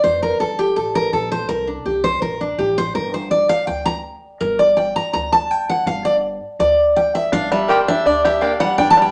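Lonesome, rustic bluegrass in a short clip led by an up-front dreadnought steel-string acoustic guitar soloing over F, Bbmaj13 and Gm, with a quiet, woody pizzicato upright bass beneath, a twangy fingerpicked banjo entering with percussive arpeggios at 7.3 seconds and a double-strung mandolin adding brief stabs from 7.7 seconds, all set in a wet studio reverb.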